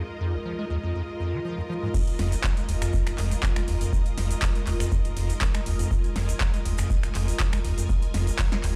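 Acid house at 121 BPM with a raw, trippy mood, this excerpt cut from a longer piece opens on a squelchy, resonant square-wave acid bass riff over Fm7, lush vintage string-machine chords in the background and a clear, intense bowed string section with light vibrato, all pumping to the sidechain, before the drop at 1.9 seconds brings in an up-front deep kick, a punchy snare with metallic hats, claps, finger snaps and crash from a tape-warm analog drum machine, and a grainy egg shaker, joined at 2.2 seconds by a thick, tube-saturated sub bass, the whole mix sounding as if played on a big sound system in a bare stone room.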